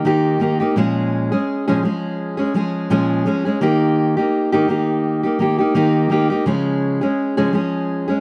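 Pop in an easy-going, heartfelt mood, this short excerpt features a solo fingerpicked steel-string dreadnought acoustic guitar, warm and up front, moving through Eb, Bbm7 and Db over lightly swung sixteenths, captured in a dry, close 1970s-style studio sound with a touch of studio reverb.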